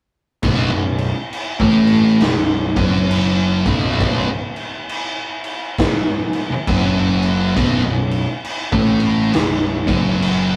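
A rough rehearsal-room recording with light reverb carries this brooding, hypnotic stoner and doom metal fragment at a slow 68 BPM in swung 4/4, where a thick, double-tracked fuzz guitar riff sits up front over a B5 chord from 0.4 seconds, a round, overdriven picked electric bass rumbles beneath, and a gritty, saturated garage drum kit with a punchy kick, medium-tuned snare and crash cymbal rings in a bright stone room until 10.5 seconds, just before the cut at 10.6 seconds.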